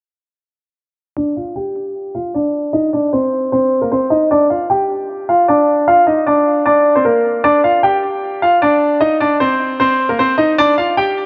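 A half-time feel sits under a 153 BPM pulse in 4/4, giving this hard-hitting, dark hip hop fragment, cut from a longer piece, a heavy, unhurried weight. A lone concert grand piano carries everything from 1.2 to 11.3 seconds, playing between Bb3 and G5 in D phrygian. Its tone is bright and polished, with deep bass, short sustain and an up-front presence, while a low-pass filter sweeps across it for the whole passage. The harmony circles around Dm, moving through Cm and a Bbadd11 before returning to Dm. A lush hall reverb with a 2.4-second tail surrounds the instrument, and the overall production leans dark and warm.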